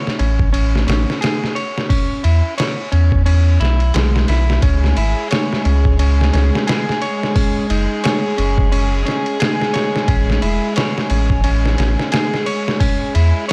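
A dry, gritty recording with little reverb opens this brooding, dark trip hop cut from a longer piece, set at 88 BPM in 4/4 with a swung 16th-note feel. A clean, fingered semi-hollow electric guitar plays arpeggios from the start, its hollow-body tone roughened by vintage 12-bit sampler grit, softened by a low-pass filter and trailed by tape echo. A sampler-style drum kit, pitched down, muffled and overdriven, sits up front with a thumpy kick, a medium-tuned snare, hi-hat and ride, joined at 0.2 seconds by a deep, round dub sub bass whose sustained, fast-attack tone carries tube saturation. At 4.6 seconds a studio string section enters with bowed, sustained chords, soft in attack, floating and smooth on top. The harmony moves through A, E, C#5 and F#5 before returning to A and E.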